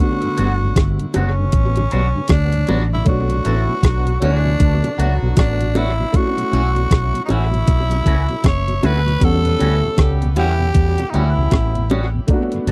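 Bittersweet and smooth, this lovers rock reggae fragment at 78 BPM in E dorian carries a raspy, gritty tenor saxophone melody with tape echo over a sampler-style 8-bit drum machine with an overdriven, thumpy kick and a dark, foam-muted fingered electric bass, both up front, while twangy electric guitar stabs through a phaser, an intimate grand piano with audible action noise, a mellow tonewheel organ with slow rotary speaker, very quiet low-tuned bongos and a distant, punchy horn section entering at 3.4 s fill out a dry, close 1970s-style sound with lossy compression artefacts.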